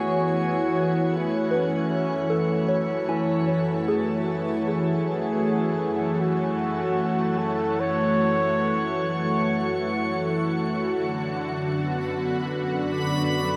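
Melancholic and reflective, this ambient fragment from a longer piece sets a mellow, close-miked flugelhorn melody with tape echo over an up-front pad of smooth, detuned sawtooth tones with chorus, while a rich, bowed cello section fades in gradually from the background. A soft, pure FM bell adds chorused, echoing arpeggios from 1.5 seconds, the flugelhorn drops out at 9.4 seconds, and a reversed, granular texture with a dreamy, bright glow enters at 12.1 seconds. The mix floats in a long, wet shimmer reverb.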